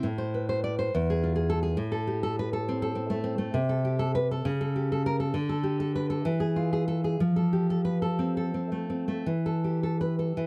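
Passionate and wistful, this romantic piece for solo classical guitar moves in a rubato 6/8 at around 53-72 BPM, settling into A minor from 3.5 s. The fingerpicked nylon-string guitar sits up front with a deep, fresh-stringed tone, ranging from E2 to D5 and passing through chords such as A7/C#, D5 and F before resting on A5/E at 9.3 s. Close, detailed microphones and light reverb capture this brief fragment cut from a longer piece.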